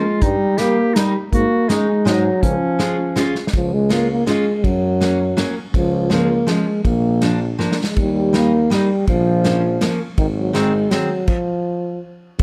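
A dark, lightly reverberant production frames this festive, jolly alpine dance-band tune in 3/4 at 163 BPM in Db major, cut from a longer piece. Up front, a mellow euphonium with light vibrato carries the melody, while a clear, soft-attack clarinet adds a brief opening second line and a fingerpicked dreadnought steel-string guitar with fresh strings and audible finger squeak gives full-bodied accompaniment. A present tuba holds down the bass, and an up-front, small-room drum kit played with bundle sticks, with a medium-tuned snare and tight kick, adds fills at 3.3 and 7.6 s before the band stops at 11.3 s.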